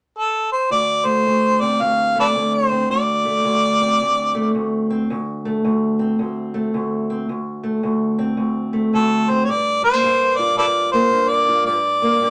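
Brooding and mournful, this swung acoustic country blues fragment opens with an up-front harmonica at 0.2 seconds, its clear, soft-attacked, scooped notes carrying light vibrato and jazz-style tongue slaps, joined at 0.7 seconds by a boxy, fingerpicked parlour steel-string guitar that moves from a D5 chord to Gm7 in a moderate studio room, while the harmonica falls silent for a stretch before returning at 8.9 seconds.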